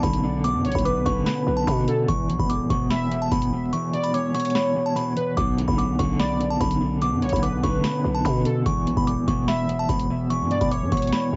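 Lo-fi cassette grain and vinyl crackle frame this brooding, melancholic trap fragment, with a dulled top end and a light reverb around it. At 146 BPM in a half-time feel in B minor, a booming analog drum machine lays down a dry, deep kick, a tonal snare and metallic hi-hats, while a growling, buzzy 808-style bass sits underneath. A dark, slightly broken-up electric guitar, fingered and up front with tremolo, shades the low register over a slow alternation of Bm and E5. Above it, a delicate, tinkling FM tine bell carries the melody through chorus, joined at 0.6 seconds by a velvety, detuned sawtooth lead with vibrato, chorus and analog delay as a second line. The kick drops out from 3.7 to 5.4 seconds, briefly loosening the low end before the pattern resumes.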